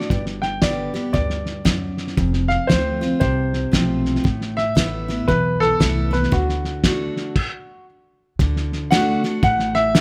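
A swung 116 BPM groove in 4/4 drives this sunny, down-home excerpt of honky-tonk and classic country, with a cloth-damped, thuddy drum kit of gritty, muffled character, fat snare, tight kick, dark cymbals and hi-hat setting the pace up front, while a pizzicato upright bass adds thumpy low notes from 0.1 seconds. A picked steel-string dreadnought with old strings picks a full-bodied accompaniment through G, F, Asus2 and D, and from 0.4 seconds a polished, present upright piano with a woody tone carries the melody. The band hits a stop at 7.4 seconds before a new section begins at 8.4, all captured close and detailed with light reverb.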